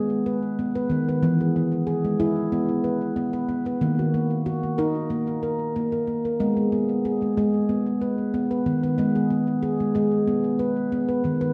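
A wet echo-chamber reverb with a long tail surrounds this gentle, hypnotic world excerpt, where a solo handpan sits up front, its stainless-steel tones ringing bright and carried further by delay. Sharp finger strokes shape a meditative figure in a steady, straight pulse, moving from G# minor through E and D# minor before settling back on G# minor by 6.4 seconds.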